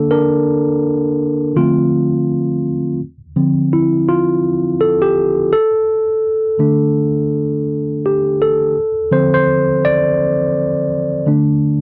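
A worn, clean, slightly out-of-tune tine electric piano plays alone through a combo amp, set up front with light reverb, drifting from Bb/D through Dm7 and Dsus4 to a rootless Bbmaj7/D in this silky, smooth soul fragment in D minor at 83 BPM with a swung sixteenth-note feel, captured in a dry, close 1970s-style studio sound and cut from a longer piece.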